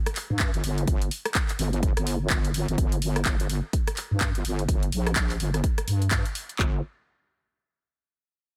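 A swung 126 BPM groove in 4/4 drives this swaggering, bouncy bass house excerpt in G minor, with two electronic house drum kits stacked up front: one of handclaps, hi-hat and rim click with warm hats, the other of handclaps and a punchy kick drum. A heavy, saturated wobble bass built from detuned square and sine tones sits between G1 and G2, chorused and compressed with sidechain pumping, and a filter sweep runs over it until 6.6 seconds. The parts play in a small room ambience, and the drums stop around 6.7 seconds, just before the bass ends at 6.8 seconds.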